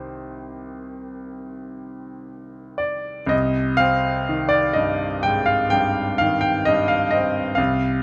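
A clear concert grand piano carries this brief, mournful fragment of a romantic classical nocturne, playing alone across the full 8.0 seconds. The tempo is slow and rubato, with the dotted-quarter pulse moving at 36-44 BPM in 9/8 metre, and the music sits in C minor, resting on a C minor chord from the outset. The piano ranges from C2 to G5, with deep bass and a polished, intimate tone, and the mood leans wistful as the opening phrase is stated and then begun again at 3.3 seconds. Close, detailed microphones place the instrument up front, capturing audible action noise alongside its present tone. A moderate recital hall reverb with a 1.4-second decay adds a sense of space around the piano in this fragment cut from a longer piece.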